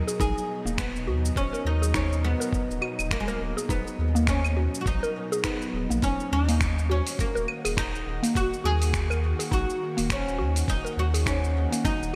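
A plectrum-plucked, fretless oud with a woody, deep tone carries the melody through digital delay in this meditative, earthy organic downtempo excerpt in Eb minor at 103 BPM, swung on the sixteenths. Round FM mallet-like plucks play arpeggios through chorus, phaser, cassette tape and delay over a sine sub bass and a thumpy, gritty sampler-style kick. A dusty soul kit of cabasa, claves, finger snaps and hi-hat sits in gated reverb, while a tense, detuned bowed-like drone and a dark, breathy wind-like texture hover in the background, with the drone and bass pumping from sidechain. The harmony moves from B/D# to Ebm7 at 6.0 seconds, all in a bright 1980s-style digital production within a lush hall reverb.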